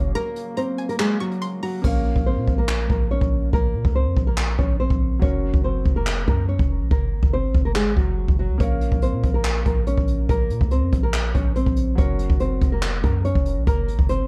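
Up front, a jazz brush drum kit with a boomy kick, dark cymbals, handclaps and hi-hat drives this menacing half-time trap excerpt at 142 BPM in Bb minor, its hi-hats muted from 1.8 to 8.6 seconds. A deep, sine-toned 808-style bass with a noise layer sits under a thumb-plucked classical nylon-string guitar melody, while a soft, felt-muted upright piano with audible action noise stays in the background, the guitar and piano both low-pass filtered, over chords moving between Gb and Bbm. In the opening 1.8 seconds, a glassy FM pad with ensemble chorus and a bright, twangy resonator pluck with chorus and tape echo color a short break, and the mix stays dry with little reverb.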